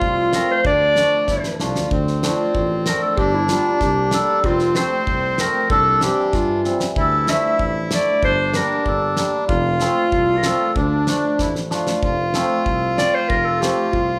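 Festive yet soulful, this 14-second klezmer excerpt in D minor moves at 95 BPM in a straight 2/4, with a distant, roomy clarinet carrying the classical-style melody over a reedy, up-front accordion second line, a shimmering hammered cimbalom, a dark, close-miked tuba bass with scooped notes and light vibrato, and a damped 70s drum kit with a fat snare and tight kick that plays fills at 1.3, 6.6 and 11.4 seconds, all captured live in one large studio room.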